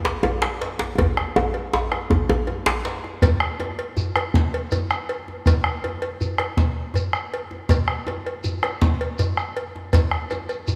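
A cowbell opens this short cut from a longer West African traditional drum ensemble piece, ringing metallic and dry at 107 BPM in a straight 12/8. Two djembes join almost at once. One is medium-tuned, struck with hard hands in a live room. The other is tight and cracking, sitting up front. A drum fill runs from 1.0 to 3.2 seconds, and one of the djembes drops out at 2.8 seconds. A round bombo anchors the low end from near the start, placed forward in the mix with a small-room character. At 3.2 seconds a new section opens as a grainy, mellow shekere enters, sitting quietly beneath the drums. The mood is earthy and driving, with a moderate, lush hall reverb over a rough home demo mix.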